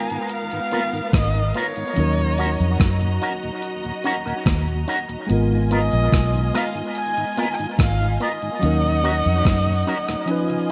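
A dark, nasal erhu opens this bittersweet lovers rock reggae excerpt, carrying a longing melody with a soft attack, vibrato and portamento through tape echo. Alongside it, a bright, lush studio string section bows a focused second line, and a worn, slightly out-of-tune tine electric piano plays accompaniment through a combo amp. A 12-bit drum machine sits up front with a thumpy, overdriven kick, hi-hat and rim click in gated reverb, while a mellow tonewheel organ with key click, chorus vibrato, slow rotary speaker and tape echo murmurs in the background beside a cabasa. A picked electric guitar with an envelope filter adds clean stabs from 0.7 s through analog chorus and tape echo, and a round, foam-muted vintage bass joins up front from 1.1 s to 9.8 s. The harmony sways between G#m69 and D#m7 in light digital ambience.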